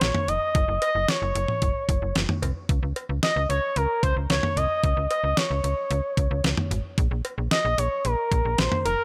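An expressive, mellow sawtooth synth lead with vibrato, chorus and tape echo carries the melody up front across this driving, melancholic synth-pop excerpt, backed by a snappy FM bass with a metallic, slap-like attack and a clean 12-bit drum machine whose thumpy kick, fat snare, hi-hat, cowbell and toms sit close and dry in a nearly reverb-free mix.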